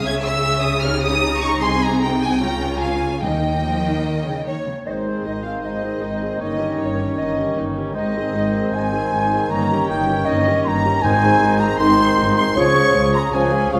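A restless, urgent classical passage opens with the full string body, a smooth violin melody with light vibrato over a lush, focused second violin line, close violas, distant basses and expressive cellos in the background, while very quiet, dry timpani strokes land at 3.2 and 11.0 seconds. At 4.5 seconds an airy wooden flute with a crisp attack takes up a second line, and from 4.9 seconds a soft-edged clarinet, a warm oboe, a mellow bassoon and a very quiet French horn section join, the horns holding sustained chords as the harmony settles onto Ab. The whole fragment, cut from a longer piece, sits in a wet recital hall reverb.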